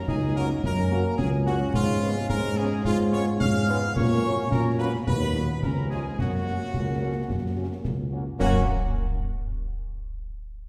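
A mellow, smooth-topped tuba sits up front with a light vibrato, anchoring this festive, spirited military-style march for wind band at 108 BPM in 2/4 and F# major, cut from a longer piece. A bright, close-miked trumpet section carries the melody while an airy flute group and a vintage-toned euphonium add second lines in the background, a dark, soft-attacked trombone section holds sustained chords, and a distant French horn section supplies tight accompaniment from 0.4 seconds. Concert snare, bass drum and clash cymbals with dark cymbal tone keep the march going, all heard from further back in a concert hall with a 2.0-second reverb.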